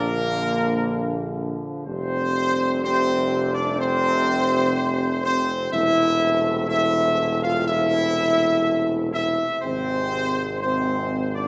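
A solemn, regal classical fanfare cut from a longer piece opens with a tight, up-front trumpet section carrying the melody in a clear tone with light vibrato, over sustained chords from a mellow, softly attacked French horn section and a vintage-toned trombone section tucked into the background, while a solo tuba anchors the bass with a soft attack, all moving through Bb, Fsus2, C6/E and Ab within a wet concert-hall reverb.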